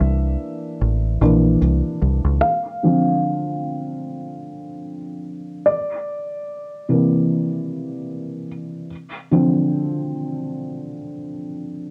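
Lo-fi hip hop with a hazy, nostalgic mood, this short cut from a longer piece moves at an unhurried pace with a gentle swing on the sixteenths. A felt-muted upright piano carries the whole passage, its thick felt giving a soft, mellow, intimate tone with audible action noise, sitting up front and darkened further by a low-pass filter and cassette tape coloring. A deep dub fingered electric bass, round, foam-muted and amped, joins the piano only for the opening 2.4 seconds before dropping out and leaving the piano alone. From 2.4 seconds a filter sweep works on the piano as the harmony shifts between C7 and Dm7. The recording sits in a moderate studio reverb and carries the worn, warbling pitch drift of old cassette tape.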